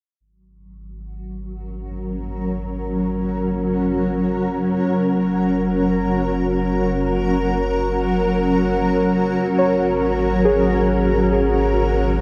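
A granular cloud pad sits up front in this serene, reflective ambient excerpt, its blurred, detuned sine tones drifting in at 1.3 seconds with a slow attack and long release while a filter sweep shapes it throughout. Beneath it, a deep, round sub bass fades in from 0.2 seconds, holding low sustained notes in free time. The harmony moves from G#9sus4 to F# and on to G#11, all bathed in a huge, wet reverb with a long eight-second tail. At 9.6 seconds, muted, felt-like synth keys enter with soft, dark arpeggios, their quickly struck, decaying notes colored by chorus and delay. Tuned slightly low to A4 = 438 Hz, the passage feels hazy and contemplative, cut from a longer piece.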